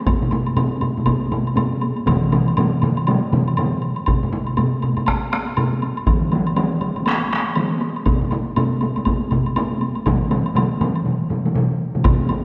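Bathed in the long, wet reverb of a concert hall, this short cut from a longer ceremonial piece of Japanese traditional taiko drumming sounds powerful, with a swung feel in 4/4. Several taiko ensembles struck with hard sticks fill the space: one sounds distant in a large room, another sits up front in a small room, and a third blends distance with presence. A woody woodblock in a small room runs throughout, and at 2.1 seconds a close, dry taiko ensemble joins the others.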